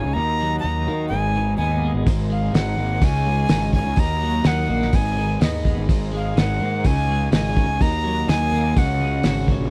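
The recording is dry and close, with a 1970s-style studio sound that puts the players almost in the listener's lap. This short cut from a longer psychedelic rock piece feels trippy and mysterious, moving in a straight 4/4 over a minor-leaning cycle of Ebm, Abm, Abadd9 and Dbadd9 chords that closes on Dbsus4. A breathy, bright metal jazz flute carries the melody with a crisp, chiffy attack and a reedy straight tone, trailed by slapback echo. Beneath it, a fuzz-drenched picked electric bass sits up front, round and overdriven, while a compressed, clean twelve-string electric guitar plays a double-tracked riff with tremolo further back, and a vintage combo organ holds mellow, overdriven chords with light vibrato in the background. At 2.1 seconds a cloth-damped drum kit thuds in with hi-hat, a tight kick and a fat snare, its muffled, gritty, rolled-off tone giving the groove a lo-fi, small-room weight.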